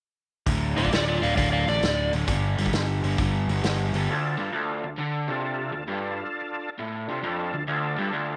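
Smoky and gritty, this short blues rock and southern rock fragment swings in 4/4 as a crunchy, double-tracked overdriven guitar riff drives from 0.5 s to the end, joined at first by a growly, bright picked electric bass and a punchy vintage drum kit with a rolled-off top whose pumping small-room sound carries hi-hat, kick and snare. An up-front overdriven slide guitar cuts in briefly with a fingered melody soaked in tape echo. Once the bass and drums drop out at about 4.1 s, a thick, overdriven tonewheel organ holds sustained chords through chorus vibrato and a slow rotary speaker, all set in a light small-room reverb.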